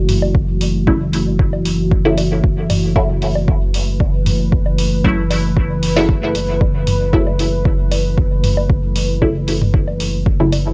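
A filtered dub chord stab sits up front, its detuned, wave-folded pluck bright and phaser-tinted, trailing dub echo and sidechain pumping from 0.9 seconds on. Beneath it, a deep dark ambient pad holds a sustained F#m7 with chorus and built-in reverb, while a smooth pure sine sub bass with tube saturation anchors the low end. A punchy electronic kick and hi-hat drive this hazy, deep dub techno excerpt in 4/4, with tape-worn electronic toms and woodblock echoing in the background of a dry home cassette recording.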